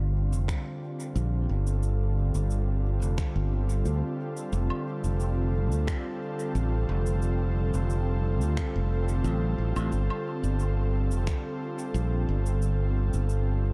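Meditative and hazy, this ambient dub excerpt moves at 89 BPM in a straight 4/4 over G7(no3) and F6 chords, with a dark production and light reverb. An airy, breathy pad holds detuned sustained chords with chorus and vintage sampler grit, while a bright, growly fingered electric bass sits up front in a low register. A tight electronic kick plays from 0.5 to 11.4 seconds, and electronic cabasa, finger snaps and woodblock, tape-tinged and carried by dub echo, sit quietly in the background.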